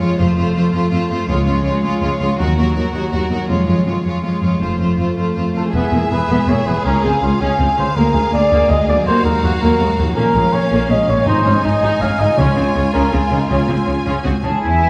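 In a straight 6/8 at 108 BPM, this soaring, adventurous heroic film-score passage in Db major sets a close, vibrato-rich studio violin melody over a lush, distant second violin line, a background viola and cello bed, ringing harp arpeggios and a smooth double bass, building through its opening 5.7 seconds before a dark, punchy up-front trumpet enters with stabs at 5.6 seconds, very quiet dry timpani join at 11.3 seconds and a pure silver flute appears just before the cut, all within a moderate scoring-stage reverb.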